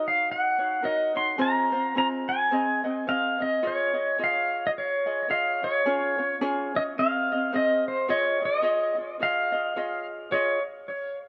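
An electric pedal steel guitar carries the melody up front in this languid, dreamy Hawaiian passage, its clean, twangy tone shaped by fingerpicks, slide and volume swells, with compression and an analog delay adding trailing echoes. Underneath, a light acoustic ukulele, also placed up front, is plucked with the thumb and supplies a mellow accompaniment throughout the roughly 10.6 seconds. The relaxed swung eighths in 4/4 give the music an unhurried sway. The harmony moves from Ebm7 through Fm and Ab to a Dbadd9, then a second phrase beginning around 5.9 seconds settles on Db, Ab and Dbadd9 again. A moderate spring reverb and an echo-heavy mix wrap the short passage, taken from a longer piece, in a hazy, floating atmosphere.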